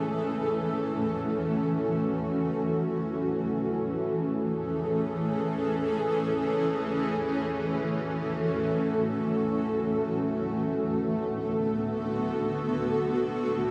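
An echo-heavy, spacious mix with a moderate digital echo-chamber ambience frames this short, ethereal hip hop passage in free time and B dorian, where a lone granular cloud pad, cloudy, detuned and bright, sits up front from 0.0 to 13.7 seconds with a slow attack and long release, its blurred, evolving sustained tones carrying built-in reverb and dub echo through F#m7, Amaj7 at 3.5 seconds, F#m7 again and a closing Bm7 at 10.3 seconds.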